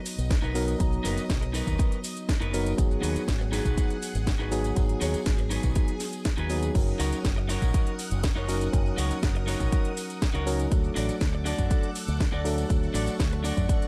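Nu-disco at 121 BPM in F# major, this groovy, feel-good excerpt runs on a punchy, tape-warm electronic kick up front and a house kit with cracking snare, metallic hats, shaker and crash, while a tambourine with egg shaker and group handclap sits close but in the background. A bright, envelope-filtered fingered bass carries the low end, a slightly broken-up, picked electric guitar plays a compressed riff with subtle chorus and tape echo, and a worn, slightly out-of-tune tine electric piano, lightly overdriven and pumping with the sidechain, adds accompaniment through tape echo. A lush vintage sawtooth string machine with a sub octave and slow attack holds sustained chords behind everything over Bmaj7, G#m7, F#6 and D, all in a dry, close-sounding mix.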